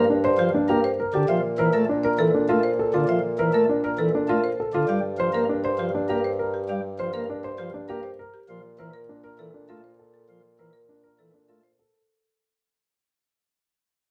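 Moving in a straight three-beat metre, this minimalist pattern piece is a short cut from a longer work that feels at once urgent and meditative, fading out across its full 12.1 seconds. A marimba played with medium hard mallets carries the melody, its woody, percussive padauk bars sounding slightly boxy, as if in a small room. Beneath it, a dark grand piano spins arpeggios with a worn, intimate tone, up front and close enough that the action noise is audible. A pipe organ supplies accompaniment on sparkling flute stops, bright and baroque in voicing with a touch of chiff, while a mellow bassoon holds the bass with light vibrato and a smooth top. The harmony sways between Gm7 and Bbmaj9 under light reverb.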